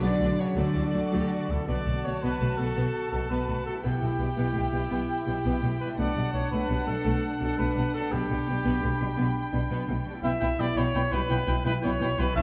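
The strings, woodwinds, horns and harp open together in this adventurous, triumphant heroic film-score fragment at 112 BPM in 12/8, with an intense violin section carrying the melody over an airy, distant flute, a classical-style oboe, a mellow clarinet and a very quiet, smooth second violin section, while lush violas and cellos sit in the background, a tight French horn section holds sustained chords, a bright, ringing harp plays arpeggios, an up-front, focused double bass section anchors the bass, and a roomy solo trumpet adds stabs from 1.0 s, the whole sound set in a moderate scoring-stage reverb with a dark, warm production.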